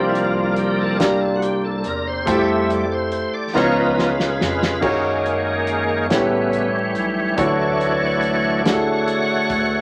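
Soulful and uplifting, this slow gospel piece in 6/8 at 47 BPM is carried by a bright, shouting tonewheel organ soloing throughout with lightly overdriven tone, chorus vibrato and a slow rotary speaker, over a natural, long-sustaining baby grand piano, a dark, breathy bass clarinet holding down the bass with light vibrato and scooped notes, and a tight, rolled-off soul drum kit that plays a fill from 3.6 to 4.8 seconds, all set in a wet studio reverb with vinyl crackle.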